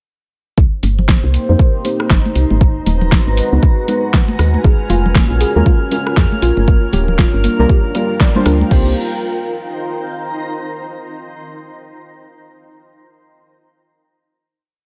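A dark, lightly reverberant mix with a digital ambience and a softened top end frames this hypnotic, moody deep house piece, built on a swung four-on-the-floor groove that begins at 0.6 s. An up-front electronic kick with a deep, tape-kissed thump drives it, joined by a programmed kit of fat snare, metallic hi-hats, rim clicks and crash, while close, dry congas sit in the background playing syncopated hand-drum patterns. A woody, round FM bass carries a syncopated riff, and a sustained analog pad with a sub octave, chorus and phaser breathes beneath deep, warbling chord stabs that sound vintage and detuned under a filter sweep, much of the arrangement pumping against the kick. A cloudy granular pad blurs into slowly shifting chords, and at 4.6 s a gentle pluck adds a six-step arpeggio that drifts against the bar, alongside a distant, nasal chamber violin section holding one high bowed note. 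The minor-seventh harmony cycles through the groove before the piece settles onto a final chord at 8.7 s, where the cloud pad lingers in its own reverb.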